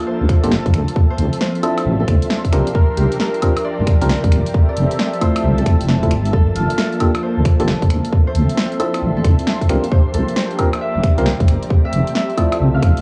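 Recorded at home onto cassette in a small room with light reverb, this bouncy, soulful slice of two-step UK garage has a hazy, lo-fi sheen. It moves at 134 BPM in 4/4 with a 65% swing on the sixteenths, set in G dorian and cycling through Gm9, Dm9, C9sus4 and Fmaj7. Up front, a tight, layered electronic kick and a deep, dark wobble bass with chorus anchor the groove, while a punchy analog drum machine adds finger snaps, hi-hat, snare and woodblock. A hollow, organ-like percussive stab with chorus, a fast attack and a decaying tail enters at 0.4 seconds. A ringing, fingerpicked Celtic harp carries the melody through tape echo, over a smooth, detuned analog pad with sidechain pumping and an ethereal, warbling airy pad with ensemble chorus and reverb drifting in the background.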